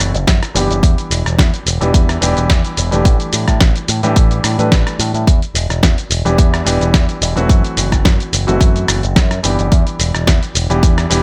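Sleek and groovy, this nu-disco excerpt moves at 108 BPM in E minor with a light swing, pairing a dark, mellow grand piano, pumping with sidechain and trailing digital delay, with a bright, tube-saturated picked electric bass through an envelope filter, a gritty, compressed sampler-style soul kit of hi-hat, rim click, shaker and fat snare, and an up-front, punchy layered electronic kick that enters at 0.3 seconds, all over chords cycling through F#m7b5, Em7 and A7sus4 in a dry mix.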